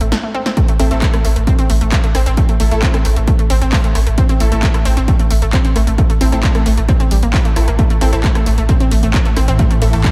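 Driving, intense peak-time techno in A minor at 133 BPM, cut from a longer piece, where a brief drum-machine fill at 0.1 seconds snaps into a drop at 0.6 seconds as a punchy, tape-warm layered kick lands up front over a saturated, overdriven sub bass on A1 and a detuned sawtooth pluck riff with chorus and analog delay, while overdriven claps, hats and snare crack through a short room alongside rim clicks, an aggressive wave-folded rave stab pumps in the background from 0.8 seconds, and a swarming granular drone rises in at 8.6 seconds, all held in light digital ambience.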